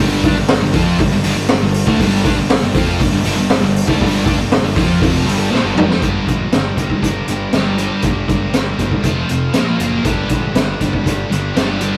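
A straight 4/4 beat at 119 BPM drives this aggressive hard rock excerpt in G minor, led by an up-front, gritty garage drum kit with a punchy kick and high-tuned snare that enters at 0.2 s and hits a fill at 5.5 s. Three distorted guitars grind out riffs in the background: a bright, double-tracked heavy one, a scooped high-gain one and a sludgy overdriven one. A dark, round fuzz bass sits beneath them, while a very quiet, thick tonewheel organ with key click and rotary speaker holds chords until 6.0 s, and the rough rehearsal-room sound moves from Gm through F5 and Bb5 back to Gm near the end.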